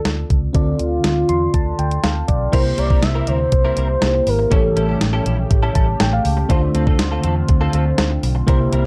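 A steady, straight 4/4 groove from a clean 12-bit drum machine drives this short cut from a longer 1980s-style pop piece, its thumpy kick, medium-tuned snare, hi-hat and crash sitting up front with a tape-tinged character. A round, punchy muted fingered bass anchors the low end while a mellow FM electric piano, soft and chorused, supplies the harmony across Dm7, C7 and A7, adding fills around 1.0 and 5.5 seconds. A velvety sawtooth synth lead carries the melody with vibrato, chorus and tape echo until 5.3 seconds. At 2.5 seconds a swirling, phased analog pad rises in the background and a bright, twangy direct-recorded guitar begins a picked riff coloured by ensemble chorus. Light reverb and a dark production give the glossy, uplifting mood a smooth sheen.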